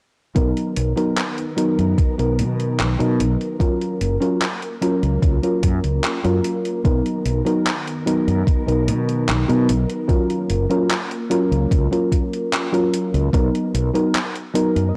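Woozy, nostalgic vaporwave excerpt in a straight 4/4, where a mellow, warbling FM electric piano with analog chorus and tape echo rides over a round, punchy fretless bass, a thumpy overdriven electronic kick up front, gated 80s drum-machine handclaps and hi-hat, and a silky string machine in the background, cycling between Bmaj7 and F#maj7 before a velvety, detuned synth lead with vibrato enters at 14.6 seconds, all captured with a dry, gritty cassette-tape sound and light reverb.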